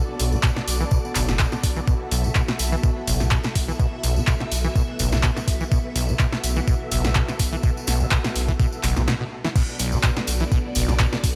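A thumpy, overdriven electronic kick drum sits up front in this hypnotic, driving acid house passage at 125 BPM in 4/4, with a 54% swing on the sixteenths and a B minor pentatonic center resting on a Bm7 chord. Beside it, a punchy analog drum machine adds crash cymbal, handclaps, hi-hat and snare, also overdriven, with a short room on the snare, clap and hats, while a jingly acoustic tambourine rings in the background. The squelchy, resonant sawtooth acid bass riff carries a filter sweep, with overdrive, subtle chorus, 12-bit sampler grit and analog delay. Underneath, a deep sine sub bass thickened by tube saturation pumps with sidechain movement, as does a lush, mellow vintage string machine holding slow-attack chords with a sub octave, a moving notch and ensemble chorus. A break and drum fill arrive at 9.1 seconds, leading into a drop at 9.6 seconds, all under light reverb in a passage cut from a longer piece.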